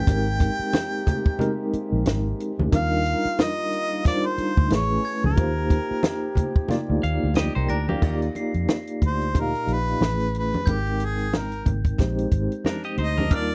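A soft-attacked harmonica with light vibrato and scooped notes opens this romantic 1970s-style soul fragment, over a worn, slightly out-of-tune tine electric piano with medium tremolo, mellow French horn chords in the background until 8.0 s, and a faint, bell-like glockenspiel. A dark, foam-muted fingered bass and a compact cocktail drum kit with dark cymbals and a high-tuned snare sit up front in a swung sixteenth-note feel, while low-tuned congas ring behind them and a bright, twangy clean guitar riff cuts in at 7.0 s. From 8.0 s the harmonica takes a jazz-style solo over lush major-ninth chords, captured in a dry, close studio sound.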